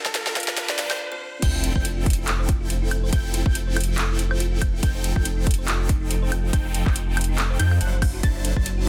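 A dense, heavily limited modern master with digital ambience frames this bright, lush future bass excerpt in F major, cut from a longer piece, moving at 141 BPM in a half-time feel with a light swing on the sixteenths. It opens with a short build-up, where a trap kit fill of metallic hats, sharp snare, handclaps, woodblock and crash runs alongside an electronic riser, and a buzzing, woody kalimba rings out a brief melody in the background. After a break at 1.0 seconds, the drop lands at 1.4 seconds with an impact and sub drop, as huge, detuned supersaw chords with phaser and delay pump against the hard-clipped kick, and a deep, thick, tube-saturated sub bass sits up front. Beneath them, a round, tine-like FM pluck with chorus spins arpeggios throughout, a punchy unison pluck with a moving notch adds high arpeggios from the drop onward, and a very quiet, breathy pad holds sustained chords. 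The harmony moves from Gm9 to Fmaj7, then F7, and ends on D7/F#.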